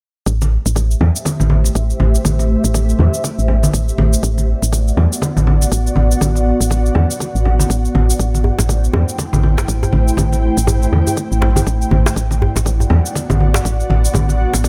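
A woody, round FM bass sits up front in this spiritual afro house excerpt, its dark, fast-attack notes decaying and pumping under sidechain compression while a filter sweep shapes its tone throughout. Behind it, an ethereal, airy pad enters at 1.2 seconds with slow-attack sustained chords, thickened by ensemble chorus, built-in reverb and tremolo, and it too carries a filter sweep and sidechain pumping. The harmony alternates between Am7 and Bm/A, giving the groove a calm, meditative glow. A deep, tape-toned electronic kick stays in the background, with a layered electronic shaker riding a swung sixteenth-note feel alongside bright, vintage-sounding congas played with soft hands. At 8.4 seconds a tight, cracking djembe joins, close and dry, adding crisp acoustic bite to the percussion. The overall sound is dry and present, with little room reverb, so the pad's own shimmer supplies most of the sense of space.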